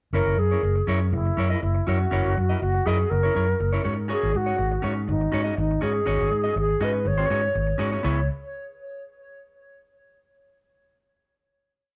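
A reedy alto flute leads this short, driving disco piece, playing a motif-based melody of song-like phrases with vibrato, a crisp attack and rolled-off highs, set up front and trailed by tape echo. Beneath it, a fingered electric bass carries an octave disco line with slides, its tone dark, round and punchy and likewise placed up front. A clean electric guitar fills in choppy sixteenth-note disco accompaniment, fingered and shadowy in color and sitting lower in the mix. The music opens on a pre-chorus that moves from F#7 to G#7sus4 before arriving on a final C#m7 chord at 8.0 seconds. Recorded as a band playing live in one room with moderate studio reverb, the whole piece has a sultry feel.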